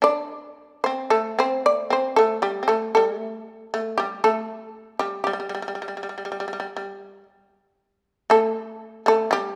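Japanese traditional chamber music, austere and calm, unfolds here in a slow, rubato 4/4, cut from a longer piece. Two shamisen play throughout the 9.6 seconds, both plectrum-plucked, fretless and up front, with a percussive, buzzing attack. The upper shamisen carries the melody between G4 and D5 with a warm tone, standing as the louder of the pair. Beneath it, the second shamisen traces its own line from G3 to D4, its sound bright and powerful. A moderate recital-hall reverb gives the duo a sense of space, letting each pluck hang briefly in the air.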